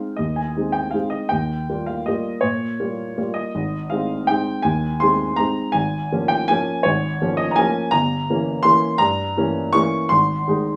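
A woody, slightly detuned upright piano sits up front, playing a graceful, sparkling classical waltz in three with a loose, rubato feel and uneven beats. Its short sustain keeps the notes crisp, reaching from deep bass to bright upper treble as the harmony moves through lush ninth and diminished chords before settling home at 10.1 seconds. A moderate studio reverb and a small-room ambience frame this brief passage cut from a longer piece.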